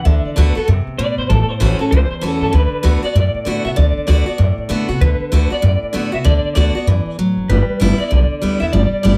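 The sound is dry, with little reverb, and this short cut from a longer rock piece feels upbeat and rowdy at 194 BPM in 4/4, with a swung eighth-note lilt in D mixolydian. An upright bass sits up front and loudest in the mix, its pizzicato gut strings giving a woody, dark, thumpy low end. A picked steel-string acoustic guitar carries the accompaniment with a bright, auditorium-style body, and finger squeaks are audible in its playing. Over them, an electric guitar played through a small old amp carries the melody with a twangy, slightly broken-up tone colored by tremolo and analog delay, taking a clean solo across the first 2.5 seconds. A new section begins at 2.5 seconds, and the harmony moves through D6, A6 and G6 chords over the 9.2 seconds.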